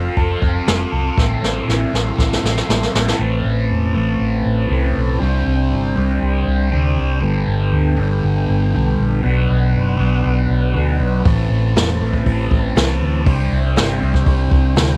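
A double-tracked fuzz guitar drives this hazy, trippy psychedelic rock excerpt at 119 BPM, its distorted, phaser-washed riff sitting up front over a round, dark hollow-body short-scale bass and sustained tonewheel organ chords turning through a slow rotary speaker with light overdrive and key click. A jazz brush kit with a boomy kick and rolled-off top enters at 0.2 seconds, plays a fill from 1.2 seconds, drops out at 3.2 seconds, and returns at 11.3 seconds, while the chords move from F and Am into open Amadd9, Csus2, Gadd9 and Bm colours. Light reverb and small room ambience frame the straight 4/4 feel.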